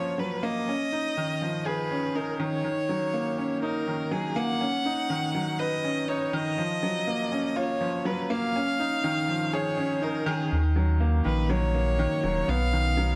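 A moderate echo chamber reverb and small room ambience surround this tender, hopeful piece of piano and strings electronica, cut from a longer work and moving at 122 BPM in a straight 4/4. From the start, a bright, woody upright piano plays a polished riff in the middle register, sitting up front. Above it, a single bowed violin carries the melody with a rich, focused tone and vibrato. Over harmony that moves from F#maj7 through C#add9, D#m7 and Badd9, the opening builds up until 10.5 seconds. There the drop arrives as a deep, round sine sub bass enters with a fast attack and sustained notes. The bass plays through to the end at 13.2 seconds while the chords settle on D#m7 and then B.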